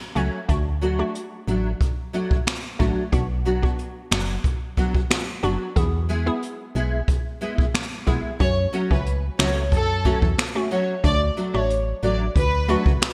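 A bright, 1980s-style digital production with light small-room reverb frames this hypnotic, bouncy dancehall excerpt in F# minor at 91 BPM, moving through D, Bm, E, F#m and D. Up front, a roomy jazz kit played with brushes, with a boomy kick, finger snaps, hi-hat and gated reverb, sits alongside a punchy, round FM bass, while a fingerpicked nylon-string guitar plays arpeggios through ensemble chorus and a crystalline, detuned wavetable pluck pumps under sidechain compression. At 8.4 seconds a lush violin section with vibrato takes the melody, carried by digital delay.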